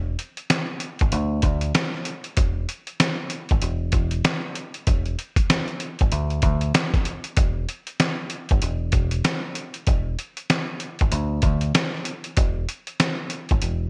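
A swung sixteenth-note groove in four drives this tough, gritty boom-bap hip-hop excerpt, carried by a sampler-style drum kit of hi-hat, thumpy kick and medium-tuned snare that sounds compressed, pitched down and coarse, with gated reverb on the drums. A deep, round picked electric bass sits up front from the start, dark and directly amped in its low register, while the drums join at 0.2 seconds. The bright 1980s-style digital production with light reverb repeats the same section twice over roughly 14 seconds.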